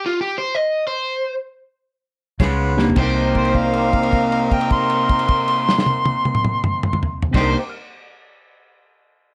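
Brooding and soulful, this short cut from a longer electric blues shuffle in C minor swings in 4/4 at 103 to 126 BPM, slowing down through its opening bars. An overdriven, hollow-bodied semi-hollow guitar carries the melody alone up front until the band lands at 2.4 seconds on a Db7 after a stop, with a drum fill just before the move to Cm7. There a second guitar, dark and slightly broken-up with subtle chorus, picks out a riff. A foam-muted, round vintage bass, mellow horn stabs with soft attack and octave doubling, and a dry soul drum kit with dark cymbals and a tight kick fill out the groove. A reedy electric piano sits in the background, and from 3.4 seconds a smooth, overdriven harmonica takes a jazz-style solo line up front, with light vibrato, tongue slaps and scooped notes, as a long held note stretches across the closing section. A moderate club reverb gives the whole an intimate, smoky room sound.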